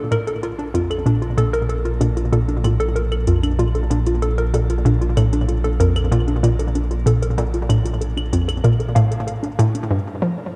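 Ambient, sequencer-driven space music at 95 BPM in 4/4, expansive and mysterious, moving from Bbmaj7 to Gm7 in this short cut from a longer piece. A warbly, dusty pluck spins arpeggios through chorus, delay and shimmer reverb, while a hollow, bouncy square-wave pluck sits up front with a low riff, and a round, deep analog bass with ring modulation holds a sustained Bb1. Metallic electronic hi-hat and claves fade in with delay from 0.1 seconds, all inside a moderate plate reverb with a dark, warm production.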